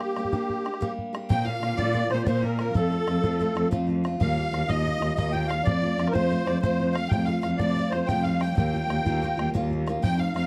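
This Celtic folk slip jig in 9/8 moves at a driving 124 beats per minute in Bb major, with a dark yet lively mood, in a short cut from a longer piece. A reedy musette accordion carries the melody up front, its wet, shimmering tuning giving it a vintage, band-limited color. A clear fiddle plays a second line in the same register, nasal and earthy with light vibrato and an airy bow. A picked steel-string acoustic guitar supplies boxy accompaniment, while a damped, tight bodhran keeps the percussion close and dry. At 1.3 seconds a warm bowed cello enters on the bass, up front yet distant, with vibrato and portamento as the harmony moves from Gm through Bbadd9, F and Ebadd9. The whole has the small-room sound of a dry, close 1970s-style studio recording.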